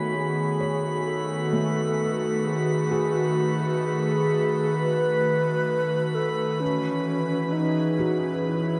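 Ambient music at 65 BPM in 4/4, weightless and warm, cut from a longer piece and heard in a wet concert hall reverb. A pure, close-miked alto flute with vibrato carries the melody through tape echo. An airy, breathy pad sits up front with chorus, holding sustained chords that move from B7 to C#m7 at 6.6 seconds, while a felt-muted upright piano plays soft arpeggios in the background and a glassy, drifting texture of overtones hovers high on B5.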